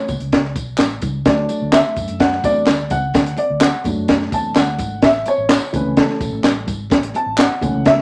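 Set in a moderate studio reverb, this short, danceable 1960s-style soul excerpt in A major at 127 BPM puts a dark, woody, mellow upright piano up front as the featured voice throughout, moving from A to D at 1.3 seconds and back to A at 5.0 seconds over a compact cocktail drum kit with a punchy kick, high-tuned snare and rolled-off top, a round, foam-muted vintage electric bass, very quiet ringing congas, and a live-room layer of tambourine and group handclaps.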